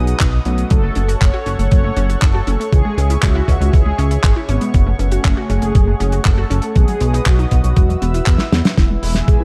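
A thumpy, tape-toned electronic kick and a dry, damped 70s kit of handclaps, hi-hat and snare drive a straight, danceable italo disco groove, with a drum fill at 8.4 s, beneath an up-front, glossy chorused synth bass in this nostalgic fragment of a longer piece. A dark, round synth brass with vibrato carries the melody over a smooth, slow-blooming analog pad, while a bright detuned analog pluck enters at 0.7 s with arpeggios in the background. A clangy, vintage electric grand piano adds brief stabs at the start and again from 9.0 s, all set in a small room with a dark, warm production.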